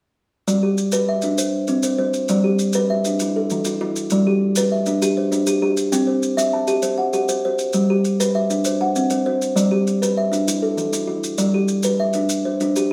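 Warm and rippling, this short cut from a longer piece sets a southern African traditional mood around an mbira-style interlocking cycle in G major. It moves at 132 BPM counted in dotted quarters over a straight 12/8, tuned slightly low to A4 = 439 Hz. A plucked kalimba carries the arpeggios from 0.5 to 12.9 seconds, spanning E3 to A5 with a woody, hollow-box tone, a soft fingertip attack and an airy, ringing sustain placed up front. Maracas sit well beneath it as grainy percussion, heard close and dry. The harmony circles G and C, with an Esus4 appearing at 3.2 seconds and again later before settling back on G. The pair play live together in a single stone room whose reverb lends the whole cycle a wet, resonant surround.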